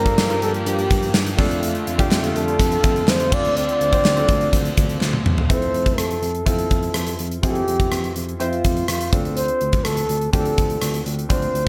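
This 1980s-style pop fragment, cut from a longer piece, moves with an urgent, moody drive in a straight 4/4. A breathy, whispered flugelhorn carries the melody from the start, its dark tone shaded with light vibrato, scooped notes and a tape echo, while a clear baby grand piano fills in the accompaniment and a tine electric piano plays the bass line with a clean glow. Behind them, a cranked stack guitar adds bright, overdriven picking through a subtle chorus, and a lush unison pad of detuned sawtooth voices holds sustained chords in the background. The pad drops out at 5.5 seconds and the guitar at 6.0 seconds, after a drum fill leads the music from its opening section into a second passage. The gated 80s drum kit sits up front with a tight kick, medium-tuned snare, bright cymbals, tambourine and toms, its gated reverb giving a big, airy punch, while very quiet group handclaps sound distant through the first half. 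Light reverb and a small room ambience frame the polished mix.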